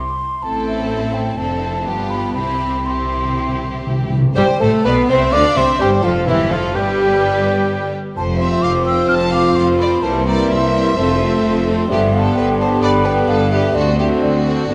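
An airy, hollow concert flute opens this stormy, dramatic passage cut from a quick classical-period symphonic movement in C major, taken at 128 BPM in 4/4 with a rubato feel. From 0.4 seconds the bowed string sections enter: a rich violin section with vibrato carries the melody from 0.5 seconds, a softer, sul tasto violin section adds a second line in the background, a close studio viola section fills in the accompaniment, and a clear, distant cello section and a rich double bass section with smooth vibrato anchor the bass. Timpani struck with soft mallets add a round fill in the background, the harmony moving from A minor through D minor and G7 to C. At 4.4 seconds the music shifts into a new section as the woodwinds and brass join: a very quiet, mellow clarinet and a warm cor anglais trace second lines, a dark, punchy bassoon supports the accompaniment, and a warm French horn section holds sustained chords with a smooth top. 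The chords then pass through G7, F, C7 and G before closing on D7. A wet concert hall reverb gives the orchestra a spacious, resonant sound.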